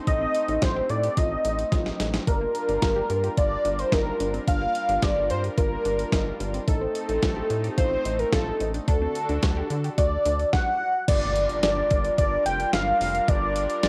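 A fat, dark analog lead sits up front and carries the melody through this short synth-pop passage in G minor, its detuned sawtooth tone colored by vibrato and cassette tape wear. Beneath it, a clean 12-bit digital drum machine drives a straight 109 BPM in 4/4, its thumpy kick, medium-tuned snare, hi-hat and crash overdriven and re-recorded in a large room, with a drum fill at 1.7 seconds. A rubbery, hollow square bass bounces along underneath, while a brassy, warbling analog pad holds sustained chords bathed in chorus and plate reverb. A lush, detuned unison pluck spins arpeggios in the background through analog delay until 10.4 seconds. At 11.1 seconds the harmony settles onto Gm7 and a very quiet electronic impact marks the new section, keeping the cool, driving mood of this home cassette recording in a moderate booth ambience.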